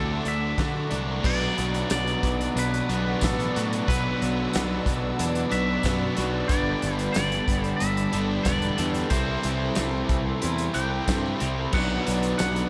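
A bright, twangy electric guitar carries the melody through spring reverb and slapback echo over a dreamy, wistful shoegaze and dream-pop groove at 91 BPM. Beneath it sit a brassy, detuned analog pad with chorus and vibrato, a quiet, compressed clean guitar played direct in arpeggios, and a biting overdriven guitar riff washed in reverse reverb alongside a second overdriven riff with lush chorus. A dark, round fuzz bass and a loose indie kit with a fat snare and tight kick, entering at 0.3 seconds, sit up front, joined by a very quiet double-tracked crunchy guitar at 1.2 seconds and a jingly, dry tambourine at 1.9 seconds, as the chords move from D through Bm, Gadd9 and C6.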